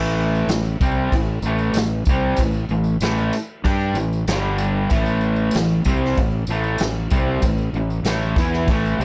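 A bright, overdriven, double-tracked garage guitar riff sits up front in this raw, rowdy garage rock excerpt at 95 BPM, moving from A5 to G5 at 4.3 seconds and back at 4.9 seconds over fuzzy, overdriven fingered electric bass, a jingly tambourine and an acoustic vintage drum kit with a punchy kick, medium-tuned snare, crash cymbal and rolled-off top, which enters at 0.5 seconds in a natural studio room.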